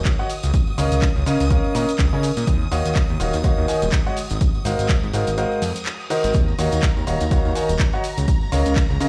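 An energetic, soulful piano house excerpt at 124 BPM in Eb dorian opens on a thick sawtooth bass up front and shimmering, vintage string-machine violins holding high chords in the background, both pumping with the sidechain and the strings further coloured by ensemble chorus. A punchy analog kick is joined by the electronic drum machine's handclaps, hi-hat and shaker, with a faint, band-limited tambourine behind, as a brilliant grand piano riff with long sustain, tape echo and sidechain pumping rides a swung groove over Db69, Ebm9 and Ab13 chords. A short break arrives at 5.4 seconds, marked by a reverse cymbal from 5.7 to 6.3 seconds before Ebm9 returns, and the mix sits in a stone room reverb, as if played on a big sound system in a bare room.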